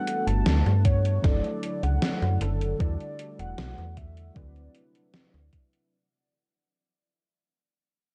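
Dark, cassette-tinged production with little reverb frames this faded, dreamy vaporwave fragment, which fades out across its whole length over Gmaj9, Dadd9/F#, Em11 and D13 chords. A velvety, detuned sawtooth lead with vibrato, chorus and tape echo carries the melody over warbling, ring-modulated lo-fi keys in lush chorus and a dim, nostalgic square-wave pad with slow attack tucked in the background. A snappy, metallic FM bass with tube saturation sits up front from 0.3 s, alongside an overdriven, gated 80s drum machine playing hi-hat and snare, and a thumpy, overdriven electronic kick that enters at 0.9 s.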